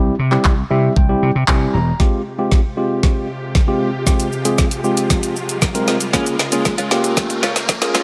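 Driving and bittersweet, this dance-pop passage in F minor moves at 116 BPM in a straight 4/4. It opens on a clean, up-front tine electric piano with sidechain pumping, together with a punchy, amped vintage slap bass that drops out at 1.9 s. A smooth R&B drum kit with a knocking kick, woody snare, metallic hats, handclaps and shaker carries a build-up and drum fill, and string-machine violas with warbling ensemble chorus and a soft attack enter at 2.0 s as the harmony moves from C to Fmadd9 under a filter sweep. A riser sits in the background, and at 6.1 s a picked, compressed clean electric guitar with analog chorus adds a riff over Bbm7, all set in light reverb.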